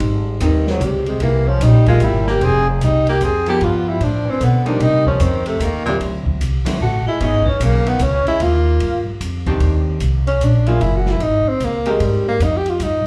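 Relaxed and swinging, this small-group jazz waltz in 3/4 is cut from a longer piece and heard live through the venue's PA with light club reverb. A breathy, mellow tenor saxophone carries the melody up front with vibrato and scooped notes, joined by a baritone saxophone second line until 9.1 s, while a woody, growly pizzicato upright bass and a dark drum kit with a punchy kick, ride, hi-hat and snare keep time. A clean, hollow-body electric archtop guitar comps underneath, pausing briefly before the tenor takes a solo from 9.6 s, and slapback echo colours the guitar and both saxophones.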